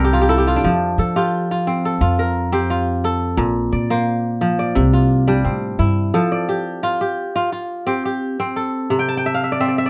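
A fingerpicked kora opens this short excerpt of West African string and xylophone music with a brief fill, its ringing, crisp arpeggios sitting up front over a woody, thumpy upright bass played pizzicato on gut strings. Moving at a steady, straight pace, the two acoustic instruments create a hypnotic, warm mood as the harmony moves through C, F, Bb and back to C. At 6.1 seconds the bass drops out, and the kora carries the second section alone, settling on F and moving to a C5 chord at 8.9 seconds before closing with another fill from 9.0 seconds. A moderate studio reverb gives the dark production a modest sense of space.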